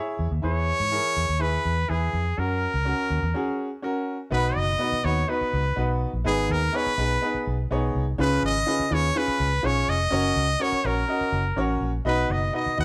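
In a straight four-four feel, this uplifting cut of uptempo 1960s-style soul opens with a short fill on bright, woody upright piano, which carries on accompanying as a round, foam-muted electric bass and a punchy, forceful jazz-style solo trumpet join up front, with a break at 3.3 seconds and a moderate stone room reverb placing the band together in one live space.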